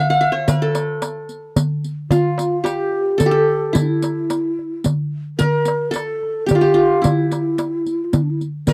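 A straight 3/4 pulse at 110 BPM carries this passionate, festive Arabic maqam ensemble piece, set in A maqam hijaz with A4 tuned to 442 Hz. The acoustic qanun opens the passage at 0.0 s and leads the melody up front, its plectrum-plucked triple strings sounding warm. Darbuka and riq join at 0.5 s: the small metal-shell darbuka gives a crisp, high tone under soft hands and sits prominently, while the riq adds bright jingles a little lower in the balance, both heard close and dry. At 2.1 s a low ney enters with a second line, its end-blown reed cane sounding breathy, hollow and mellow, with vibrato and a soft attack. The whole has the intimate feel of a 1970s-style studio session touched with light reverb, and the passage is cut from a longer piece.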